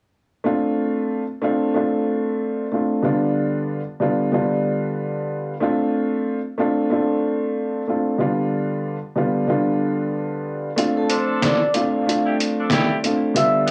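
A woody, slightly detuned upright piano carries this gritty, dark, swung boom-bap hip-hop excerpt alone over Dm7 and G7/D changes until a compressed, pitched-down sampler-style kit of overdriven hi-hat and snare enters at 10.8 s, joined at 11.0 s by an airy soft-mallet vibraphone melody with tape echo and then by punchy, tight horn stabs, framed in a dry cassette sound with small-room ambience.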